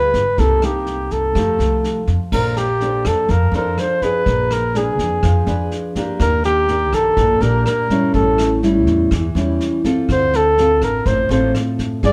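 Sophisticated and breezy, this excerpt from a longer bossa nova piece in Bb major moves at 124 BPM in a straight 4/4, with a mellow flugelhorn singing a jazz-style solo melody up front over a fingerpicked, classical-sounding nylon-string guitar whose fresh strings ring out alongside it. A woody, thumpy upright bass with gut strings plays pizzicato underneath, while a vintage brush kit with a punchy kick, medium-tuned snare, rim clicks and a crash sits softly behind with a rolled-off top. The band plays live in one room, wrapped in a moderate stone-room reverb, as the harmony drifts from Cm7 and F9 into a second section opening on Bbmaj9 at 2.3 seconds and passing through Ebmaj7, A7 and Dm7.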